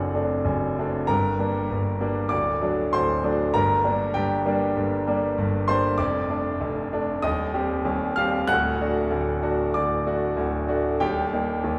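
Stormy and agitated, this short cut from a longer classical piece is a virtuoso piano study in G minor, moving at 96 BPM in 4/4 with a rubato feel and tuned to A4 = 441 Hz. A solo grand piano with a brilliant, up-front tone plays for the full 11.8 seconds, spanning D1 to F#6. Its harmony turns restlessly between G minor and D major before landing on E-flat, all set in a wet concert-hall reverb with a 2.4-second decay.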